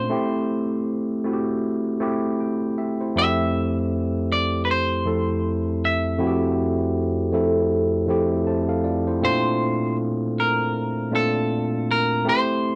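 Soul at a relaxed 79 BPM in F major with a swung sixteenth-note feel, this romantic, warm excerpt pairs a bright, clean semi-hollow electric guitar melody with a barky, gritty overdriven tine electric piano played through a combo amp with phaser, both up front in a dry, close 1970s-style studio sound with light reverb, moving from Am7 to Fmaj7 at 3.2 seconds and Bbmaj9 at 9.2 seconds.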